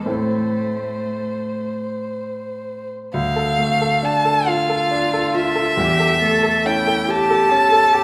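Elegiac and solemn, this excerpt from a slow romantic piano-trio movement drifts in a rubato 6/8 at about 38-47 BPM in dotted quarters, moving from A minor into D minor at 3.1 s and reaching an A7 chord over E at 5.8 s. A single violin carries the melody up front with expressive vibrato, a soft attack and gliding portamento, while a distant, dark and woody cello sings a second line with its own vibrato. A smooth, vintage-toned grand piano, also close in the mix, supplies the accompaniment, and the whole trio sits in the wet reverb of a scoring stage.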